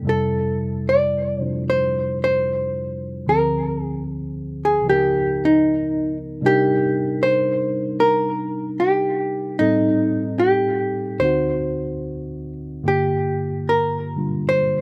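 The recording has an open-air dryness touched only by light reverb, with both instruments placed up front. It is a wistful, intimate jazz ballad in a swung 4/4, cut from a longer piece. A worn, slightly out-of-tune tine electric piano carries the accompaniment through a combo amp, lightly overdriven and colored by phaser and slapback echo. From 0.1 seconds a dark, clean, picked hollow-body electric guitar carries the melody, with a slapback echo of its own. The harmony moves from Fmaj7 through Dm7b5, Db13 and Cm9, then Am7b5 and D7b9, before a new section opens on Gm7 at 12.8 seconds and runs to the close at 14.8 seconds.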